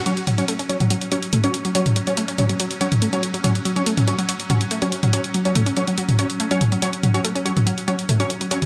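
A moderate plate reverb and digital ambience surround this short excerpt of driving peak-time techno, with lossy compression artefacts audible in the sound. At 142 BPM in a straight 4/4, the mood is industrial and intense, resting on an F#5 chord from 0.1 seconds. Up front, an electronic techno drum kit carries warm hats and toms, layered and produced, and re-recorded in a large room. A round, bright analog pluck plays the riff with sawtooth and pulse-wave tones, detuned with a noise layer and a fast filter pluck, coloured by chorus, overdrive and tape echo. Aggressive, thick rave stabs cut in with ring modulation and a filter sweep over detuned unison sawtooth and triangle waves, treated with chorus, built-in reverb and delay. Underneath, a swarming, tense drone evolves with granular, sustained sine layers and a slow attack, sitting lowest in the mix from 0.0 to 8.7 seconds.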